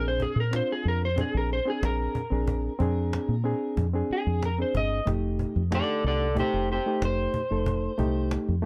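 Straight-eighth soul blues with a rollicking, gritty mood, cut from a longer piece. An up-front, slightly broken-up electric slide guitar solos over Bb9 and F9 chords, backed by a reedy, clean electric piano heard through its built-in speakers, a dark, round, punchy foam-muted fingered bass, and a woody cajon with faint snares that enters at 0.2 s, in a dry, close 1970s-style studio sound.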